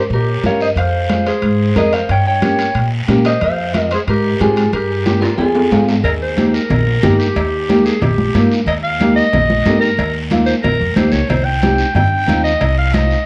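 A straight, driving cumbia groove in 4/4, built from close, ringing congas, a raspy, distant guiro and band-limited vintage timbales and cowbell, underpins this danceable latin excerpt. A woody, growly upright bass and a full-bodied, fingerpicked nylon-string guitar with finger squeak carry it forward, while a compressed, slightly broken-up electric guitar with spring reverb and tape echo leads the melody until 5.8 s beside a clear clarinet second line. After a drum fill, the clarinet takes a forceful, jazz-style solo with light vibrato from 6.0 s, the mix colored by worn, warbling cassette tape with pitch drift.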